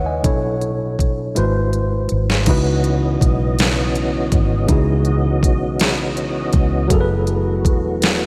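Slow, yearning late-night R&B in a 6/8 lilt at 54 BPM in C# minor, where a worn, slightly out-of-tune tine electric piano with light overdrive sits up front beside a dark, foam-muted fingered bass and a tape-toned drum kit with a knocking kick and deep snare, a drum fill from 1.4 to 2.5 seconds leads into a clean tonewheel organ that enters at 2.5 seconds with chorus vibrato and slow rotary sustaining the chords, all in light reverb, in this short cut from a longer piece.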